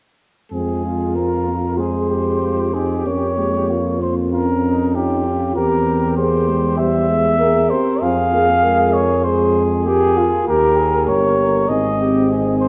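A dark production in a wet recital hall, with a 1.6-second reverb tail, frames this solemn, heroic brass quintet passage in F minor, cut from a longer piece and moving at a rubato 97 BPM in 4/4. Up front, a shadowy trumpet carries the melody with light vibrato and a smooth top, while a distant, roomy flugelhorn sings a second line behind it. A close-miked French horn and a vintage-toned euphonium supply accompaniment in the background, and a mellow tuba with a gentle attack anchors the bass up front, the five parts sounding together from 0.5 to 12.7 seconds.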